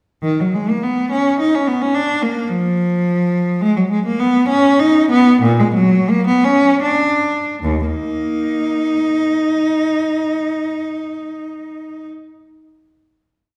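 A single bowed cello, rich, smooth and even with vibrato, carries this brief, solemn baroque-style suite movement in Eb minor, its flowing melody leaping down to bass notes across a range from Eb2 to Eb4. The 3/4 pulse moves with rubato between 72 and 109 BPM, slowing from 2.8 to 7.6 seconds before a final chord sounds from 7.6 seconds to the close. The cello sits up front and close, framed by a wet recital-hall reverb heard from further back in the room.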